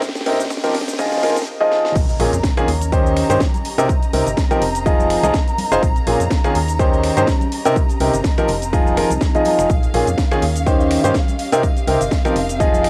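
A short build-up opens this energetic, bittersweet piano house clip, cut from a longer piece: a punchy, overdriven electronic kick sits up front beside a house kit with a cracking snare, hi-hat, shaker, finger snaps and crash, while a background riser sweeps in under muted, veiled strings holding con sordino chords. Within the first second a clear, woody upright piano takes the riff, polished and present, and an organ-like FM bass enters beneath it with a hollow, percussive, dark tone. A very quiet, ethereal pad with a slow attack and airy chorus drifts in at 0.2 seconds, and the drum fills and filter sweep push toward the drop at 2.0 seconds. There an electronic impact lands, and faint acoustic tambourine and congas join with hard hands, while the chords cycle through a seventh-chord progression with a swung sixteenth-note feel. Sidechain pumping breathes through the piano, bass and strings, the piano adds tape echo, and a cassette-tape character and moderate booth ambience give the whole mix a homemade, lo-fi tint.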